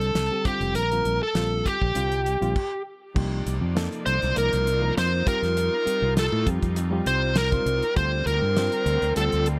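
Driving and nocturnal, this electric jazz fusion excerpt runs at 100 BPM in 4/4 with a slight sixteenth-note swing: a smooth, overdriven, picked lead guitar sits up front over a round, dark fretless bass, a reedy, barky electric piano heard through its built-in speakers, and a damped 70s drum kit with dark cymbals, a fat snare and a tight kick. In the opening bars an airy, distant flute with expressive vibrato carries a second line over Gm7 and Csus4 before the band stops at 2.6 s. A bright, intense string section enters at 3.1 s with bowed sustained chords in the background, and at 3.2 s the guitar takes a solo in C dorian over Cm11, F7sus2 and Dm7, all with very little reverb.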